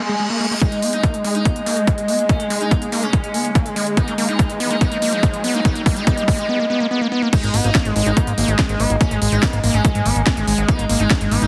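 Psychedelic trance at 143 BPM in G# minor, intense and alien, opening on a reverse cymbal and riser as a buzzing, plectrum-plucked sitar with shimmering sympathetic strings carries the melody through phaser and delay over a very quiet, swarming granular drone, while a squelchy, screaming distorted acid riff with chorus pumps up front under a filter sweep through the build-up. A punchy kick and a techno kit with cracking snare and smooth, low-pass-filtered hats enter at 0.6 seconds, and a drum fill leads into the drop at 7.3 seconds, where a fat, tube-saturated analog bass arrives. The mix has light reverb and a heavily compressed, radio-like sound.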